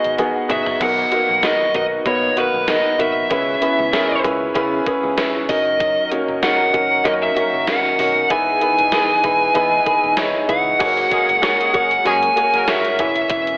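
A grand piano fill opens this nostalgic, uplifting 1980s-style pop excerpt, joined by a short drum fill from a gated digital drum machine with a thumpy kick and gated reverb on the snare, before the full band settles into a 96 BPM groove in F# mixolydian with a light sixteenth-note swing. Up front, a dark, distorted fuzz lead guitar carries the melody, while the clear, open concert grand piano, with its deep bass, supplies the accompaniment. A very quiet, compressed clean electric guitar, recorded direct, picks a riff underneath, and a bright, punchy picked bass sits in the background. From 0.8 seconds a smooth, detuned analog pad with chorus holds sustained chords, and at 11.1 seconds a distant, roomy horn section adds tight stabs with octave doubling and tape echo. The whole mix carries a lush hall reverb and a telephone-like tone, and the chords move from G#m7 through Bmaj7, C#m7, F#6 and Emaj7 to F#add9 at 10.8 seconds.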